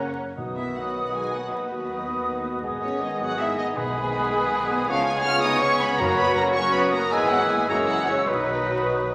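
Rocking along at 106 dotted-quarter beats per minute in a flexible, rubato 6/8, this short cut from a fast romantic orchestral movement in B major sounds dramatic, lively and spirited. A lush violin section carries the expressive melody with vibrato and a soft attack, reaching as high as E#6. An airy flute group, a distant, roomy oboe, a very quiet clarinet and a softer second violin line weave second lines around it. Beneath them, a mellow bassoon and a background viola section with portamento fill in the accompaniment, while a tight trombone section and a vintage-toned French horn section hold sustained chords and a close-miked trumpet adds background stabs. A rich double bass section and a very quiet cello section anchor the low end, and round, dry timpani strokes enter at 0.4 seconds and return from 3.8 to 6.5 seconds. A recital hall reverb with a 1.4-second decay and a layer of vinyl crackle give the recording an aged, spacious character.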